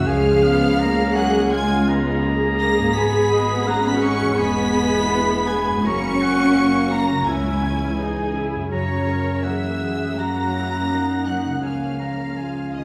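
A focused, close violin section carries the longing, bittersweet melody across this rubato cinematic passage at 83 BPM in 4/4, with an intense second violin line and mellow flutes behind it, a warm, present solo oboe, rich violas in accompaniment, tight, dark French horns holding sustained chords, ringing harp arpeggios, and smooth cellos and clear double basses on the bass, all moving from C# through G#m7, E, F#, C#madd9 and F# back to C# and heard from further back in a wet recital hall.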